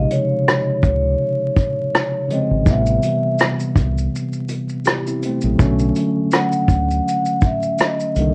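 A vibraphone played with soft mallets and its motor off carries the melody, its mellow, ringing metallic tone dulled by a low-pass filter as it drifts between Db5 and F#5. This melancholic, hazy lo-fi hip hop fragment, cut from a longer piece, moves at 82 BPM in 4/4 with a gentle swing on the sixteenths. Beneath it, an up-front tine electric piano plays clean accompaniment through its built-in speakers, softened by cassette tape and a low-pass filter as the harmony moves from a rootless Bbm9 to Am9 at 2.7 seconds and Bm9 at 5.6 seconds. A deep, round dub bass, fingered and dark, sits low, while a vintage brush kit enters at 0.1 seconds with tight kick, hi-hat, rim click and shaker, up front with a rolled-off top and a grainy 12-bit sampler edge. Light reverb, vinyl crackle and the warbling pitch drift of worn old tape give the recording its faded, dreamy haze.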